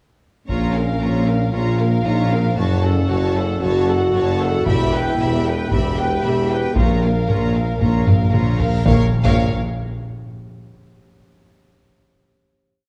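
A dark, epic orchestral film score at 115 BPM in Bb minor, where two violin sections and a viola section play a smooth, vibrato-rich rocking two-note figure over sustained chords, while a mellow French horn section carries a tight melody and cellos, double basses and a mellow tuba anchor the low end in the background. Heavy-stick taiko drums drive a big ostinato at 0.5 seconds and again from 4.7 seconds, timpani strike single bass notes from 6.8 seconds, and a drum fill leads into a huge, dark reverse cymbal that swells from 8.6 seconds into a low impact landing on the final chord at 8.9 seconds. The whole piece sits in a wet scoring-stage reverb.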